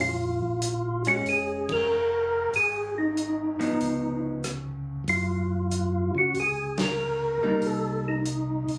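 A swung 4/4 groove drives this late-night, soulful soul jazz organ trio, cut from a longer piece and punctuated by two full-band accents. Up front, a round tonewheel organ with third-harmonic percussion, chorus vibrato and a slow rotary speaker carries the melody, while a mellow, clean organ bass with key click holds the bottom over changes from Bbm7 through Db9 and Gbmaj7 to Cm7. A dry drum kit with dark cymbals, a tight kick and a medium-tuned snare enters at 0.6 seconds, and a picked hollow-body electric guitar adds comping from 1.1 seconds, all heard through a phone-in-the-room recording with moderate club reverb and compression.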